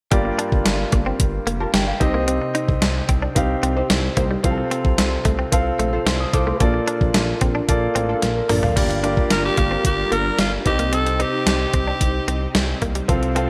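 The straight 4/4 pulse at 111 BPM comes from a gated 80s digital drum machine with a thumpy kick, a gated reverb snare, hi-hat, toms and crash cymbal, sitting up front with a tape-warm, small-room character. This short cut from a longer 1980s-style pop piece in G minor feels nostalgic and urgent, moving through Gm7, Cm, F/C and Bbmaj7. A concert grand piano carries the accompaniment from the start, intimate and polished with audible action noise and long sustain, while a smooth, mellow synth bass with vibrato holds the low end. A bright, twangy clean electric guitar plays a riff in the background through analog chorus and delay. From 1.6 seconds a punchy, nasal polysynth adds funky stabs with chorus, continuing until 8.7 seconds as a drum fill enters at 8.2 seconds. At 8.8 seconds shimmering vintage string-machine violins with ensemble chorus bring sustained chords, and at 9.3 seconds a raspy, gritty alto saxophone steps up front with a forceful pop-style solo melody touched by delay, all set in light digital ambience.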